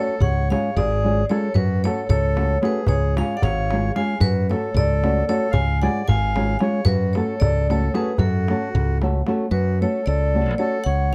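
In a straight 5/8 pulse, this fiery, bittersweet Balkan wedding-band piece puts a ringing, metallic hard-mallet vibraphone on the melody, with a reedy single-reed accordion carrying a second line alongside it over alternating C# and F#m chords. A dark, woody nylon-string guitar sits up front with thumb-plucked accompaniment, while a bright, direct fingered electric bass anchors the low end. A deep clay-shell darbuka played with soft hands stays in the background until 9.5 seconds, and the close, dry sound of this short cut from a longer piece keeps every detail clear.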